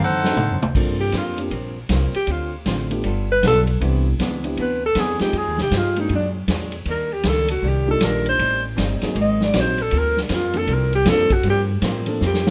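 A swung 4/4 groove drives this brassy big band excerpt, with the drum kit opening on a fill and returning to another near 12.2 seconds. The kit sits up front yet sounds distant and roomy, with a medium-tuned snare, a boomy kick and a rolled-off top across crash, ride, hi-hat and toms. A smooth-topped saxophone section states a brief melodic figure with light vibrato that stops by 0.6 seconds. A breathy alto saxophone then takes a solo from 1.0 seconds, its mellow subtone still punchy and roomy over minor-key harmony. Beneath it, a woody pizzicato upright bass anchors the low end, and a dark, vintage grand piano comps with audible action noise. A clean, picked hollow-body electric guitar fills in quietly in the background, all under light reverb.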